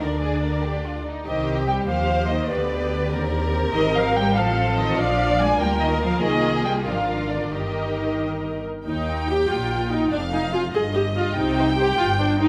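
Muted violins carry a graceful, cheerful melody in this quick classical-period string orchestra excerpt in 6/8 and Eb major at 96 BPM with a rubato feel, joined by a second violin line, accompanying violas, and cellos and double basses on the bass, all con sordino with a veiled, dark sound in moderate scoring-stage reverb.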